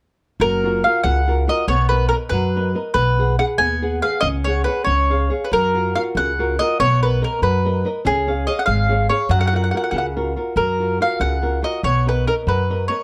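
Lively and sunny, this short excerpt of an Italian folk serenade moves at 94 BPM in a rubato 6/8, centered on F# major with chords drifting from F#maj7 to Bmaj7 and through a C# suspension. Up front, a mellow, woody mandolin carries the melody with picked double strings and a slapback echo, while a dark, fingerpicked flamenco guitar supplies the accompaniment. A thumpy pizzicato upright bass on gut strings grounds the whole, all captured with close, detailed microphones and little reverb.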